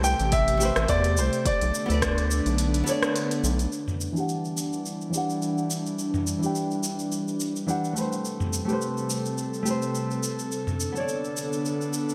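A swung 106 BPM groove in 4/4 carries this wistful sunset chillout excerpt in E minor, where a smooth, tape-toned R&B kit of hi-hat, rim click, shaker and toms with gated reverb and a brief deep electronic kick support a boxy, dark grand piano melody with 12-bit sampler grit and delay until 2.6 s, a round analog bass up front until 3.7 s, fingerpicked nylon-string guitar with low-pass filtering and delay that gains a filter sweep from 3.7 s, and an airy, breathy chorused pad sustaining Am9, Bm9 and Em9 chords, all bathed in a wet plate reverb with bright 1980s-style digital production.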